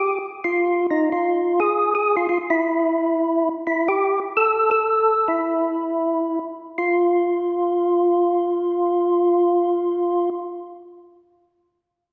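Jazz at a swinging 173 BPM in 4/4, this soulful, bluesy fragment of a longer piece features a lone percussive tonewheel organ, fat and lightly overdriven with third-harmonic percussion, vibrato and a slow rotary speaker, playing up front between Eb4 and A4 for 10.3 seconds inside the lush reverb of a church or concert hall.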